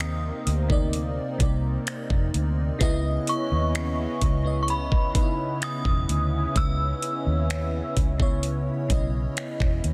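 This late-night contemporary R&B fragment, cut from a longer piece, opens with every part at once in a slow, straight 4/4 and an air of longing. A chiming, inharmonic synth melody rings high above, its vintage FM tone softened by ensemble chorus and tape echo before it falls away at 7.9 seconds. Beneath it, an FM electric piano layered with a soft pad plays dreamy, detuned accompaniment with chorus and phaser, while a thick sawtooth unison pad holds sustained chords that pump under sidechain. Up front, a dark, round, foam-muted fingered electric bass anchors the low end beside a produced electronic kit of knocking kick, metallic hats and finger snaps, with soft clipping on the snare. The harmony moves from Cm9 to C#m9 at 2.8 seconds, all set in light digital ambience with a dense, heavily limited modern master.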